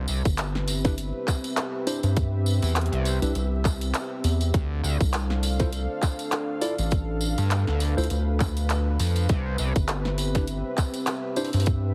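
Playful and funky, this glitch hop excerpt at 101 BPM swings lightly as an overdriven electronic kick and a drum and bass kit with a cracking snare, bright hats and handclaps drive beneath a gritty, wave-folded synth bass that drops out at 9.7 seconds, a rubbery square bass, a jingly tambourine, delayed tine electric piano stabs and a moody, detuned analog pad pumping with the sidechain over Cmaj7 and Dm7, all wrapped in a heavily compressed radio sound with vinyl crackle.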